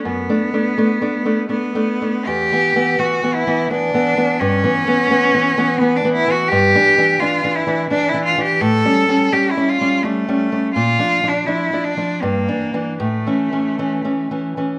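In a rubato triple metre, this solemn, melancholic romantic duo, cut from a longer piece, pairs a single bowed cello carrying the melody with fingerpicked nylon-string guitar accompaniment, both up front in the moderate reverb of a recital hall. The cello sounds rich and focused, with vibrato and a smooth top, while the small, dark acoustic guitar lets finger squeak come through. The harmony moves through Em, A7 and Bb before settling on A, and the guitar rings on to 14.8 seconds after the cello stops at 14.5.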